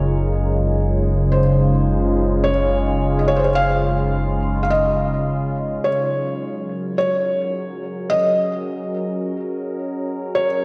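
A felt-muted upright piano carries the melody up front, its soft, intimate tone showing audible action noise and a touch of tape echo, in this serene, peaceful ambient excerpt at 53 BPM in Gb lydian. Beneath it, an evolving wavetable pad holds sustained chords beginning on Gbmaj9, detuned and warbling through a phaser with a slow attack, while a round, deep analog bass with ring modulation sits on Gb1 until 5.8 s. A lush hall reverb and cassette tape character surround the recording.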